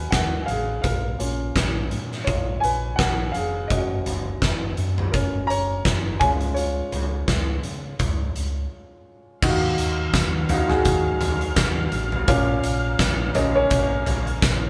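A band playing together in one large studio room, with a moderate reverb, gives this uplifting, anthemic piano-driven pop passage an open, live sound. At 84 BPM in 4/4 with a light sixteenth-note swing, a woody upright piano sits up front and carries a solo through the opening, over a round, amped fingered electric bass and a huge arena drum kit with a punchy kick, fat snare, hi-hat, toms and crash cymbal. The harmony moves through D#madd9, A#m, F# and C#, and a brief break arrives at 8.7 seconds. At 9.4 seconds the progression returns to D#madd9 and a lush, bowed string section enters with smooth, vibrato-rich sustained chords. A very quiet, jingly tambourine joins at 9.8 seconds, adding a compressed, saturated shimmer beneath the piano and drums.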